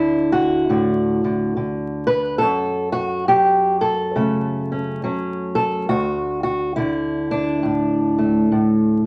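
A fingerpicked old ladder-braced acoustic guitar plays alone throughout this short folk excerpt, its tone dark, woody and boxy with the dull ring of old strings, sitting up front in the mix. The mood is nostalgic and pastoral, moving at a relaxed 69 BPM in 4/4 with a gentle swing on the eighth notes. In D major and tuned slightly below standard pitch, the guitar ranges from D2 up to B4, moving from Dadd9 to F#m at 2.4 seconds and settling on D5 at 5.9 seconds. A wet studio reverb adds a short tail, while vinyl crackle gives the sound an aged, worn surface. Lasting about 9.1 seconds, the passage is cut from a longer piece.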